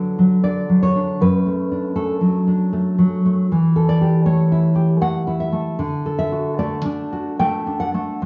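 A dark, full-bodied nylon-string guitar plays alone and up front in this brief, nostalgic romantic excerpt in a rubato three-beat feel, its thumb-plucked bass and audible finger squeak set in a moderate recital-hall reverb as the harmony moves from D through A7 and home to D over 8.3 seconds.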